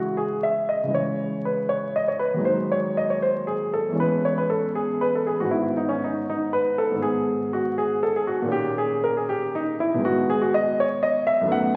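Through the crackle of a very old 78 rpm record and a wet, lingering scoring-stage reverb, a solo grand piano, intimate and up front with audible action noise, plays a dance-like, radiant baroque-style suite movement in 12/8 with rubato, its excerpt moving from C#m through G#m chords across roughly 11.8 seconds.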